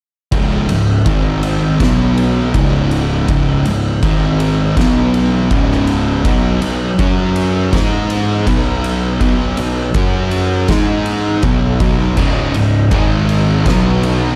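Brooding and heavy, this short stoner and doom metal excerpt trudges at 81 BPM in straight 4/4, with two thick fuzz guitars grinding out a riff around power chords on C#, G#, B and F# while a growly, overdriven picked bass sits beneath them. An oversized low-tuned drum kit stands up front with a boomy kick, fat snare and dark crash and ride cymbals, its big, pumping room sound gritty and saturated. At 12.2 seconds a tight, bright double-tracked distorted guitar joins the riff in the background, all within a dark production with light reverb and small room ambience.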